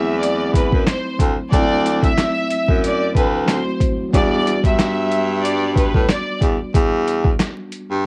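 A gritty, pitched-down sampler drum kit with a thumpy kick and medium-tuned snare sits up front in this dark boom-bap hip-hop excerpt at 92 BPM in E minor, swung on the sixteenths and colored with cassette-tape grit and vinyl crackle. A distant, roomy baritone saxophone with vibrato carries the low bass line, while a mellow tine electric piano heard through built-in speakers comps over the move from D7 to Em7 at 4.1 seconds. An intense, bright bowed violin section with light vibrato and tape echo plays the melody until 6.4 seconds, all in a dry room.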